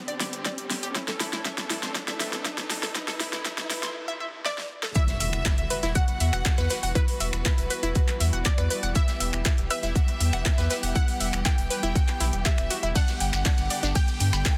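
Progressive house in E minor at 120 BPM, bittersweet and expansive, cut from a longer piece: a rich, bowed string section and a bright analog pluck arpeggio ride a filtered build-up with a riser, drum fills, a punchy electronic kick and a deep house kit with a fat snare and metallic hats, pausing for a break at 4.0 seconds as a lush detuned unison pluck melody with dub echo enters at 4.5 seconds. The drop at 5.0 seconds then brings a round, deep analog bass, a biting violin section on a second line, a very quiet airy acoustic kit and an electronic impact, with much of the mix pumping under a dense, heavily limited master, and a grainy shekere joins at 13.0 seconds as the chords return to G.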